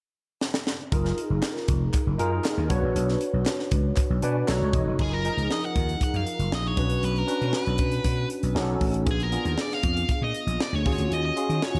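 Polished 1980s jazz-funk pop with a breezy, glossy mood, moving at 118 BPM in a straight 4/4 in F# major. A tight funk drum kit opens with a short fill at 0.4 seconds, its high-tuned snare and punchy kick sitting up front alongside crash cymbal and hi-hat in a small-room sound. From 0.9 seconds a growly, amped vintage slap bass and a barky tine electric piano, clean through a combo amp and treated with ensemble chorus, carry lush chords such as F#maj13 and Bmadd9, while a crisp, very quiet group handclap joins briefly. The electric piano plays a fill leading into the second section, where a nasal lead guitar with a parked wah takes the melody at 5.0 seconds, overdriven, picked and trailed by tape echo. The harmony later moves through A#7b9 to D#m11, and the whole mix is soaked in a dreamy plate reverb, cut from a longer piece.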